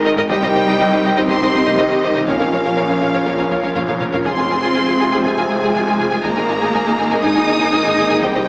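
A straight 4/4 pulse at 121 BPM drives this tense, relentless hybrid orchestral and electronic film-score excerpt, where a lush, vibrato-rich studio violin section carries the melody over a darker symphonic violin second line, a soft-attack viola section with portamento and a close, expressive cello section on the bass, while an airy, breathy chorused pad, mellow French horns and distant, roomy trombones hold quiet sustained chords, a snarling, growling distorted saw bass and a background double bass section share the low end, and a dry taiko ensemble struck with hard sticks enters at 0.3 s and plays a fill from 3.8 to 4.3 s over a Cm, Bbm, Fm, Absus2 progression, the whole set in a wet scoring-stage reverb with a small-speaker sound.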